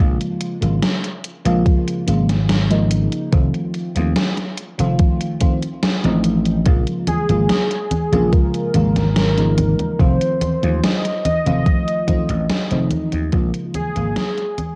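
A bright, growly slap bass sits up front in this melancholic, nostalgic vaporwave piece, under a lush, dreamy FM electric piano with a soft pad layer, thickened with phaser, chorus, 12-bit sampler grit, cassette tape character and tape echo as it moves between Bbm7 and F7. An overdriven 80s drum machine with gated-reverb snare, hi-hat and congas is joined at 1.7 seconds by a thumpy, overdriven electronic kick. A velvety, detuned synth lead with vibrato and a sub octave enters at 7.1 seconds, before the home cassette recording fades out from 11.1 seconds.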